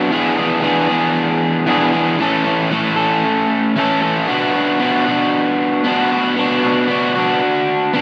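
Jangly and carefree, this 8-second rock excerpt features a lone crunchy, overdriven electric guitar, picked and double-tracked up front with tape echo in a moderate studio reverb, moving through E7, A and Bm in a straight 4/4 feel.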